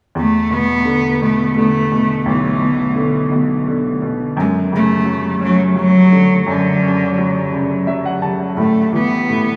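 Pop in a swaying 6/8 with a tender mood, this brief excerpt pairs a rich, bowed solo cello carrying the melody, sung with vibrato and a smooth top and touched by analog delay, with a bright, woody upright piano playing the accompaniment, both placed up front. Harmony moves from E7sus4 to Dmaj7/F# around 4.4 seconds, with the piano adding a fill near 7.5 seconds before settling on A5. The dreamy mix is soaked in a long cathedral reverb over a hint of small room ambience.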